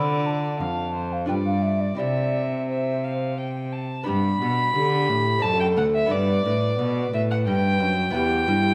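Serene and dance-like, this fragment of a baroque-style sonata movement in triple time has a wooden, pure-toned flute carrying the melody with tongued notes alongside a reedy, gut-strung violin playing a second line. A rich, bowed cello sits up front on the bass, while a delicately fingerpicked lute with double gut strings adds soft accompaniment in the background. All four play throughout, set in a reverberant recital hall.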